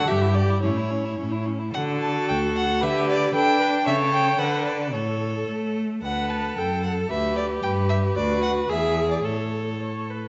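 A rich violin melody and a dark second violin line, both smooth with vibrato, carry this lively, cheerful classical-period string quartet movement in D major, which moves at 106-116 BPM in 2/4 with rubato over an expressive viola accompaniment graced by portamento and a clear, focused cello bass played close and up front, all bowed by single players and set in a moderate scoring-stage reverb with a mellow top end, in a brief passage cut from a longer piece.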